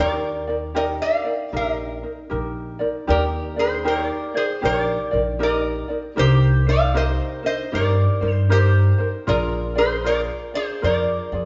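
A lilting swung 4/4 carries this dreamy, languid Hawaiian excerpt, where an up-front metal-body resonator slide guitar sings the nasal, metallic melody with fingerpicks over a mellow, fingerpicked ukulele and a woody pizzicato upright bass on steel strings, all three playing live in one stone room whose wet reverb and dark, softened top end wrap the Ebmaj7, Cm7 and Bb7 changes in a hazy glow.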